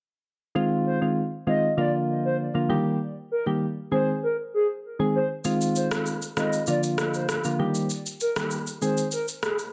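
This sultry, hypnotic afrobeats fragment opens at 0.6 seconds with soft electric-piano-like synth keys, round and mellow, laying down a steady Fm7, Bb, Eb, Ab progression in a straight 4/4 feel. Just after, a hollow clarinet-like synth lead enters at 0.9 seconds, its woody, detuned tone given a soft attack, sustained notes, vibrato, chorus, plate reverb and tape echo as it carries the melody. At 5.5 seconds an electronic shaker and rim click join up front, their layered, overdriven sound carrying the ambience of a large room. The keys, also treated with chorus and plate reverb, sit up front with a fast attack and gentle decay beneath the lead. The whole is set in a wet studio reverb and finished with a dense, heavily limited modern master, cut from a longer piece.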